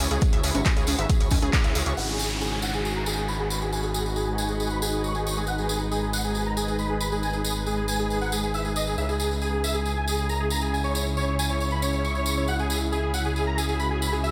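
A straight 4/4 pulse at 137 BPM drives this euphoric, soaring uplifting trance excerpt in G# minor: a punchy up-front electronic kick, analog drum-machine congas, handclaps and hi-hat, and a bright, lush detuned pluck arpeggio with chorus and delay open over a gritty, saturated sidechain-pumped synth bass, a shimmering, ethereal pad and a distant, jingly tambourine, before a huge, thick compressed supersaw melody takes over at 2.0 s with a filter sweep and delay alongside an electronic downlifter, as the chords move from C#m to G#m7 and back to C#m under light reverb.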